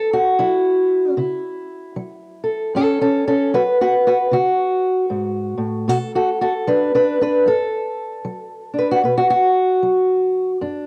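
A fingerpicked old ladder-braced acoustic guitar plays alone from the first second, its boxy, woody tone and dark old strings sitting up front in a mournful, smoky acoustic country blues excerpt with a swung feel, moving from F#m7 to Bm7 at 5.9 seconds through a moderate spring reverb with the character of a home cassette recording.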